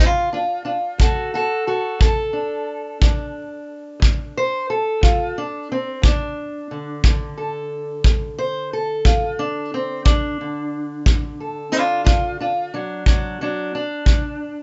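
A dark, boxy parlour guitar opens on a D5 chord, fingerpicked on steel strings and carrying the melody from low D2 up to C5 in this swaggering, gritty fragment of acoustic country blues, cut from a longer piece. At 1.0 seconds a punchy, roomy kick drum joins, played with brushes, and drives a slow 12/8 pulse at 60 BPM in dotted quarters with a straight feel. The dry, dull-topped sound keeps both parts up front until the kick drops out at 14.2 seconds, leaving the guitar alone until 14.6 seconds.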